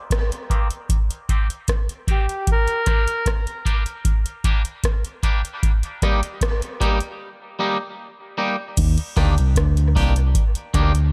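Dub reggae at 76 BPM in 4/4, this laid-back, spacious clip from a longer piece moves from Cm7 to Gm and later to Ebmaj7. A booming analog drum machine, re-recorded in a small room and sitting up front, lays down a deep kick, metallic hi-hats, rim clicks and crash cymbal. A twangy, bright electric guitar plays clean picked accompaniment with a warbly pitch drift and dub echo, and a filter sweep colours it through the first 5.6 seconds. A reedy, nasal melodica, close-miked and up front, carries a brief melody between 2.1 and 3.3 seconds, trailed by dub echo. After a break, a dark, round fingered electric bass enters at 8.8 seconds, adding a deep low end in a dry mix with little reverb.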